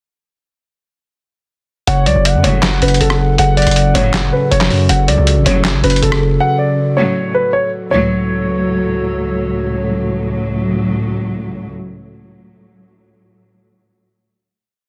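Trap-leaning hip hop in F# minor, brooding and dark, moving at 159 BPM with a half-time feel, built on a looping hook over F# minor from 1.9 seconds to 7.9 seconds before settling on a final chord. A dark concert grand piano carries the repeated melody, joined by a mellow tine electric piano arpeggiating over a pedal note through a phaser, a gliding portamento lead adding a sparse, detuned counter-melody with chorus and delay in the background, a distorted 808-style bass with long sliding sub notes, and a gritty, pitched-down sampler-style kit with snare layered with clap, rim click and fast hi-hat rolls. A warbling, lo-fi tape-like pad and lush bowed string stabs enter just after, the pad sustaining and the strings punctuating until 11.7 seconds, all within a dense, heavily limited modern master.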